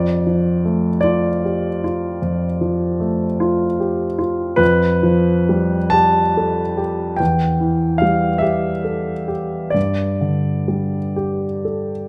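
A warm grand piano plays alone throughout this 12.1-second fragment of a Romantic nocturne, its intimate, natural tone sitting up front with the sound of the key action clearly audible, spanning E2 to A5. The mood is nostalgic and serene, moving at a slow, rubato 41-52 BPM in dotted quarters within 12/8, with the harmony drifting from Dm/F to Emadd11 at 7.2 seconds and settling on G5 at 9.8 seconds. Close, detailed microphones capture the instrument, while a moderate recital hall reverb lends a gentle sense of space.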